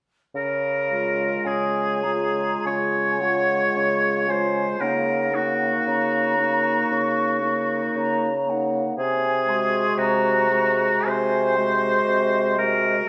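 A moderate hall reverb gives this short excerpt of a slow romantic movement for wind quintet a gently resonant, church-like space. The mood is lyrical and tender, with a rubato feel that lets the phrases breathe over a harmony that moves from Db to Ebm7/Db at 4.8 seconds and on to Ab7/C at 9.0 seconds. A hollow, airy silver concert flute carries the melody high in its range, its soft attack and vibrato sounding somewhat distant, while a clear, punchy oboe sits up front with a second line. Beneath them, a clear clarinet stays in the background and a warm, vintage-toned French horn with light vibrato fills out the accompaniment. A mellow bassoon anchors the bass from the opening moment, its roomy tone rounding off the blend of the five winds.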